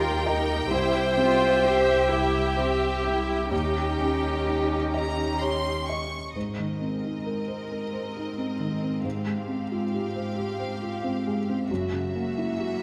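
Moving and uplifting, this rubato cinematic film-score passage in 6/8 at 42-46 BPM, cut from a longer piece, settles into Ab major at 6.4 s as a rich, focused violin section carries the melody over a smooth second violin line, a dark clarinet that falls silent at 5.8 s, a felt-muted upright piano with audible action noise, background violas, bowed cellos and a clear, lush double bass section that drops out at 7.2 s and returns at 11.7 s, all set in a moderate scoring-stage reverb.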